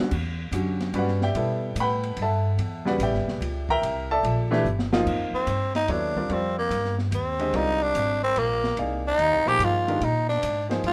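Swinging in three, this cool, hypnotic modal jazz excerpt opens with smooth vintage grand piano, woody pizzicato upright bass and a drum kit with dark cymbals and a boomy kick. After a drum fill at 4.7 seconds, a raspy, growling tenor saxophone enters up front at 5.3 seconds for a breathy solo full of scooped notes, heard in a moderate club reverb.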